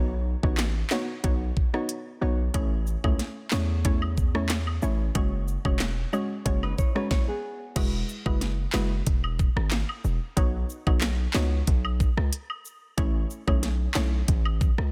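A hard-hitting 808-style bass, punchy and heavy with a fast attack, sits up front in this bouncy, summery dancehall excerpt in E major at 92 BPM, while a hollow, detuned square-wave pluck with chorus lays mellow accompaniment over chords such as Badd9, A and F#sus2 from the start. They are joined at 0.4 seconds by an electronic afro-pop drum kit with a knocking kick, sharp snare with soft clipping, smooth hi-hats, handclaps, rim click and crash cymbal, and close acoustic woodblock and cabasa enter at 2.5 seconds. A dark, thumb-plucked nylon-string guitar adds brief arpeggios at 6.6 seconds just before a short stop, all within digital ambience and a dense, heavily limited modern master.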